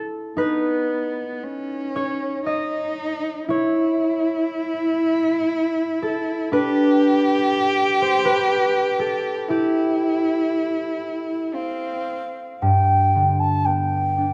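Wistful and tender, this Celtic slow air in triple metre with uneven, rubato beats sets a ringing, thumb-plucked concert harp accompaniment beneath a dark, woody, bowed cello second line with vibrato, until an airy wooden baroque flute enters at 11.5 seconds with an expressive, tongued, vibrato-laden melody just before the cello stops at 12.6 seconds, the whole cut from a longer piece and heard in a moderate recital hall reverb.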